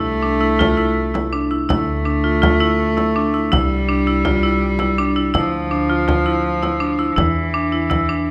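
Contemporary chamber music in an uneven 5/4 at 164 BPM, urgent yet pensive, this short excerpt cut from a longer piece opens with a bright, hard-mallet marimba spinning woody arpeggios up front while a rich, nasal bowed cello with light vibrato carries an earthy second line. Beneath them a growly pizzicato upright bass anchors the low end, and a deep frame drum, close and dry, joins at 0.6 s. The harmony moves from Am/C through Dmadd9 and Cadd9 before settling on Dsus2/E, all set in a moderate recital hall reverb.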